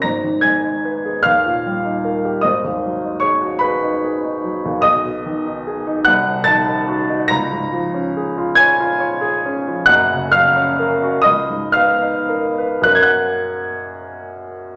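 A slow, rubato 12/8 lilt drifts between 35 and 52 BPM in dotted quarters, giving this romantic classical nocturne a freely breathing pulse. The mood is nostalgic and serene, set in F# major. A single upright piano carries everything alone from 0.0 to 14.8 seconds, its warm, woody tone sitting up front with long sustain across a range from F#1 to A#6. The harmony opens in G#m and moves through D#, G#m7 and G#m/B to a Cdim7, then settles on C# and F#, with a rich C#13 before resolving to F# at 12.9 seconds. A wet recital hall reverb with a 1.5-second decay surrounds the instrument, and the passage is cut from a longer piece.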